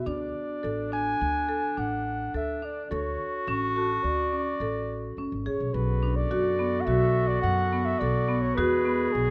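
A mellow, present flugelhorn carries the jazz-style melody over a roomy, distant clarinet line, vintage band-limited marimba arpeggios struck with medium hard mallets and a woody, growly pizzicato upright bass, with a clear woodwind section adding tight sustained chords in the background from 5.8 s in this hopeful, shimmering fragment of contemporary chamber music in 5/4.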